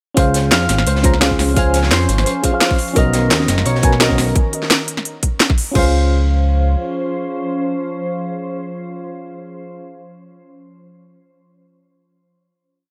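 Liquid drum and bass with a lush, dreamy mood, this short piece opens on a mellow, round FM electric piano playing syncopated chord stabs through chorus, tremolo and digital delay. A glassy, ethereal FM pad with ensemble chorus and reverb enters at 1.4 seconds, while a thumb-plucked concert harp loops a six-step arpeggio drifting against the bar through dub echo. Beneath them sit a smooth, up-front synth bass line in dub style, a tight two-step electronic kick, a rolling drum and bass kit with cracking snare and crisp hats, and a gritty, saturated breakbeat tucked in the background. The kick and the drum and bass kit stop at 5.8 seconds as the piece settles onto its final chord.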